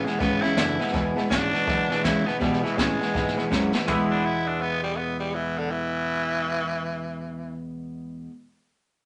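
A raspy, breathy tenor saxophone carries the melody with vibrato over a rollicking, upbeat rockabilly groove at 164 BPM in swung 4/4, backed by a twangy clean electric guitar riff, a full-bodied picked steel-string acoustic guitar in the background, a growling overdriven electric bass, a very quiet detuned, jangly honky-tonk upright piano that adds a fill from 3.1 to 3.9 seconds, and an up-front brushed drum kit with a boomy kick and high-tuned snare that plays a fill before stopping at 4.0 seconds, all in a short cut from a longer piece.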